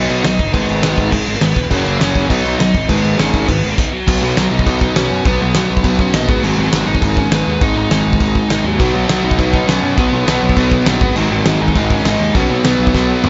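A dry mix with its top end rolled off gives this upbeat, rebellious punk rock cut a driving 203 BPM in B major, straight 4/4. A loose acoustic drum kit sits up front in a pumping studio room, its fat snare, punchy kick, toms and dark crash cymbals entering at 0.1 seconds and closing with a fill at 12.9 seconds. An overdriven semi-hollow guitar carries the riff up front with a warm, hollow-body tone. It is joined by a bright, distorted electric guitar riffing in the background that drops out at 3.6 seconds, just before a stop at 3.8 seconds, and returns at 8.8 seconds. Over them, a dark, high-gain lead guitar plays the melody throughout, while a growly, fuzz-laden picked bass anchors the low end. The chords move between B, G#m and F#, settling into G#5 and B5 power chords near the end of this cut from a longer piece.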